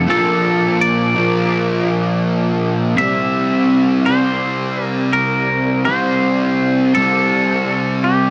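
A straight 4/4 pulse at 83 BPM carries this wistful, dreamy rock excerpt in C mixolydian, where an up-front, double-tracked fuzz guitar drives a distorted, chorused riff beneath a bright, twangy, compressed electric guitar melody touched with analog delay, moving from Bbmaj7 to C at 3.0 seconds inside a wet concert hall reverb.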